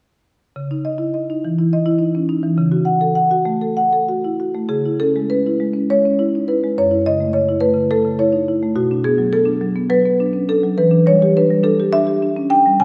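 Flowing and hypnotic, this contemporary classical piece for solo marimba moves in 7/8 at 207 beats per minute in eighths, with a rubato feel in C# minor. The single marimba, struck with medium hard mallets, plays from 0.6 to 12.8 seconds across a span from F#2 to G#5, its rosewood bars giving a woody, mid-forward tone that sits up front. The opening passage colours C#madd9 and A6/C#. At 4.7 seconds the music shifts into a new section that steps through C#m7, F#m7, Bm7 and Em7. A wet scoring-stage reverb with a 1.8-second decay places the listener further back in the room, so the instrument rings within a generous space. The recording is a short cut from a longer work.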